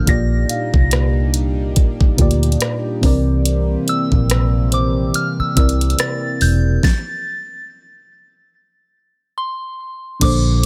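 Contemporary R&B at 71 BPM with a swung sixteenth feel, dreamy and romantic, moving from Ebmaj7/Bb to C7 before a stop arrives at 6.8 seconds and lasts until 10.2 seconds in this short cut from a longer piece. A soft, pure synth bell carries the high melody with chorus and phaser over a warbling, vintage FM electric piano, a shimmering pulse-width pad holding sustained chords, and a delicate celesta with delay sitting in the background. Up front, a punchy, foam-muted fingered electric bass and a produced drum kit with knocking kick, fat snare, hi-hat, rim click and crash cymbal anchor the dry, close sound.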